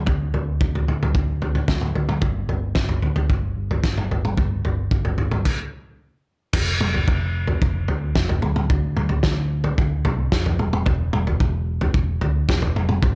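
Dark and brooding, this quiet-loud alternative rock fragment pairs a round, amped picked electric bass with a loose, up-front indie drum kit whose fat snare, punchy kick, crash and toms sound gritty and saturated with a rolled-off top, all in a dry space, halting for a stop from 5.5 to 6.5 seconds before the second section begins.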